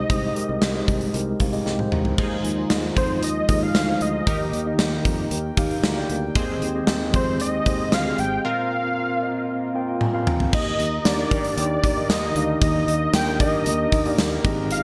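This 1980s-style pop excerpt in Eb major moves at a straight 115 BPM, with a romantic, glossy mood and a bright digital sheen bathed in a lush hall reverb. A thick, bold unison synth lead carries the melody from the start, its detuned sawtooth tone mellow and colored by vibrato and a digital delay, over a mellow tine electric piano heard through its built-in speakers and a growly, punchy fretless bass. The gated drum kit sits up front with a tight kick, bright cymbals, tambourine and toms in an airy stone-room sound, and both drums and electric piano play fills leading into 2.2 seconds and again near 10.5 seconds. At 2.2 seconds a shimmering, retro pulse-width pad and a funky, wave-folded polysynth comp with chorus and delay join in the background, the comp dropping out at 10.5 seconds. The chords move from Abmaj7/C through Fm7/Eb, Eb, Abmaj7/Eb and Bbsus2 before settling on Ebmaj7 for the closing stretch.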